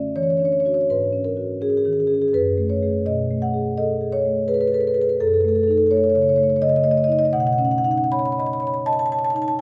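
A dark, warm recording places a solo marimba up front in a reverberant recital hall, its soft mallets drawing a mellow, round tone across a range from F#2 to B5. This contemporary classical piece moves in a flowing, reflective 3/4 at around 83 BPM with a rubato feel, drifting through suspended and extended harmonies such as Esus2, F#madd9, B13 and F#m6 before settling on Badd9. The passage is cut from a longer work and lasts 9.6 seconds.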